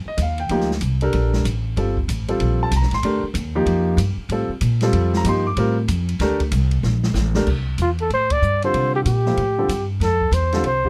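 A woody, thumpy upright bass, plucked on gut strings, opens this searching, open modal jazz passage, with a polished, present baby grand piano joining almost at once and an open jazz drum kit close behind. The swung kit sits further back, with dark cymbals, a medium-tuned snare and a boomy kick captured naturally in a small room. The bass and piano stay up front over a long, spacious Bbmaj9 harmony. A drum fill at 6.8 seconds leads into a shift to Fmaj9 at 7.5 seconds. A breathy, dark trumpet then takes the melody at 7.8 seconds, soloing up front with vibrato, scooped notes and a smooth top, and the band hits a shared accent shortly after. The sound is close and detailed, with little reverb, and the clip is cut from a longer piece.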